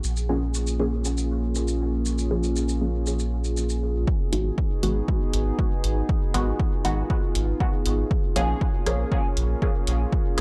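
Dub techno in a meditative, hazy mood: a warbling, lo-fi pad with chorus and built-in reverb sustains chords over a round, deep sub bass with tube saturation, both pumping to the sidechain alongside a dark, muted chord stab trailing dub echo and phaser, while an electronic shaker and hi-hat tick throughout and an overdriven, punchy kick enters up front at 4.1 seconds, all in a dry, gritty hardware recording with light reverb and digital ambience.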